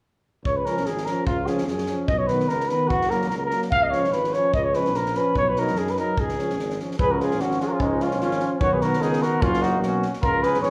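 A swung two-beat pulse in 2/4 drives this exuberant, wild Balkan brass band passage, cut from a longer piece. A compact cocktail drum kit keeps the beat with a punchy kick and a high-tuned snare, its acoustic sound dark and smooth with a rolled-off top. Over it, a cornet carries the melody up front in a dusky, classical style with light vibrato, and a distant, roomy tuba anchors the low end. In the background, a clear trombone with vibrato and a soft attack and a mellow, close-miked euphonium fill in the accompaniment. At 7.0 seconds a warm flugelhorn enters with a second line, moving over chords of Db, Cb and Gb. The whole band plays live in one room, bathed in a wet, large studio reverb.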